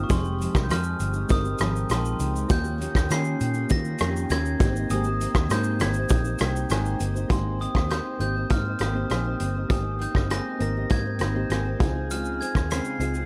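Dreamy, hazy indie bedroom pop in Ab major at 100 BPM, where a bell-like glockenspiel with soft plastic mallets carries the melody over bright picked acoustic guitar, mellow chorused electric-piano-like synth keys, a dark, round, foam-muted electric bass and a loose, up-front indie drum kit with punchy kick, hi-hat, rim click and shaker, moving from Fm9 through Eb7 and Abmaj9 before shifting to Abmaj7 at 7.3 seconds and Dbmaj7 at 11.8 seconds in this short cut from a longer piece.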